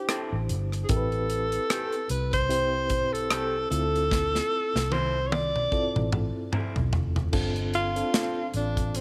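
Bittersweet and cinematic, this short excerpt of lush 1970s-style soul moves at an unhurried 75 BPM in 4/4 with a swung sixteenth-note feel, set in D dorian. A clear alto saxophone carries the melody up front, its soft attack, subtone and vibrato giving it a jazz-inflected intimacy, and it takes a solo from 7.3 seconds as the harmony shifts to a G9sus4. Beneath it, a reedy electric piano with fast tremolo supplies mellow chords through its built-in speakers, while an electric guitar through a small old amp picks a dark, slightly broken-up, lo-fi riff. A polished modern drum kit with a punchy kick and medium-tuned snare sits forward in an airy small room, playing a fill from 4.1 to 7.3 seconds, and a foam-muted fingered bass adds round, dark low end. Light reverb and small room ambience frame the chords as they pass from C6 through Am7 to Dm9.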